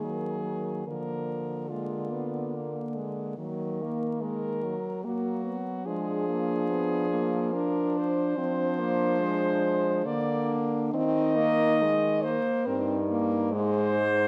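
Serene and gently glowing, this lyrical classical passage for horn quartet is cut from a longer piece and moves in an unhurried triple metre with flexible, rubato timing. A clear French horn carries the melody up front, while a mellow second horn with a smooth top sings a lower line beneath it. A third horn, close-miked and warm, fills in the accompaniment. The fourth horn anchors the bass with a light vibrato and a distant, roomy character, yet still sits up front. The quartet plays together from the opening, the harmony brightening at 8.4 seconds, all set in a moderate scoring-stage reverb over a layer of vinyl crackle.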